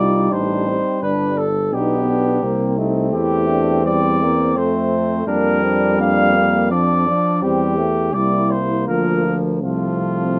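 This classical brass quintet excerpt opens with all five players sounding together, carrying a noble, triumphant mood at 84 BPM in 3/4, with uneven beats and a rubato feel that lets the pulse breathe. An up-front, mellow trumpet sings the melody within a range of F4 to F5, while a softer flugelhorn traces a second line between A3 and Eb4 in the background. A clear French horn with light vibrato and a smooth-topped trombone, also touched with light vibrato, fill in the accompaniment, and a warm, vibrato-laden tuba anchors the bass from G1 to F2, sitting up front alongside the trumpet. The harmony moves from C minor through G and C7/E to F, then passes through Gm7/F, C/E and Bb/D before settling on F/C near 9.6 seconds. The trumpet, horn and tuba carry a distant, roomy quality within an otherwise close, detailed recording that has little reverb, and the passage is cut from a longer piece, ending at 10.4 seconds.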